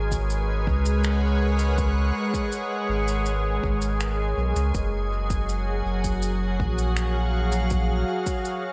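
Deep and spacious, this short slice of ambient dub drifts at 81 BPM in 4/4 with a straight feel, set in G# dorian and tuned slightly low to A4 = 439 Hz. A soft, organ-like pad holds sustained chords up front, its pure, bright tone softened by a slow attack, long release, ensemble chorus and built-in reverb, moving from G#m11 to F#maj9 at 4.7 seconds. Beneath it, a round, sine-like sub bass sits close and full, sustaining low notes until it stops at 8.0 seconds. An electronic kick drum adds a layered, tape-warm thump, while a quieter shaker and finger snaps bring an acoustic, brushy texture carried on dub echo. The whole fragment, cut from a longer piece, sits in light reverb and studio ambience that lend it an airy sense of room.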